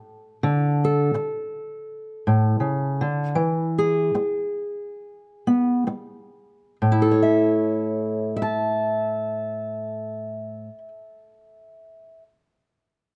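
In a lightly swung 4/4 that slows from 0.4 to 6.8 seconds within a range of 61-86 BPM, this hopeful, pastoral folk fragment from a longer piece features a solo fingerpicked steel-string acoustic guitar in A major, tuned to A4 = 436 Hz, moving through D5, E and A chords with a dark, up-front tone, audible finger squeak and close, detailed miking set in a moderate recital-hall reverb.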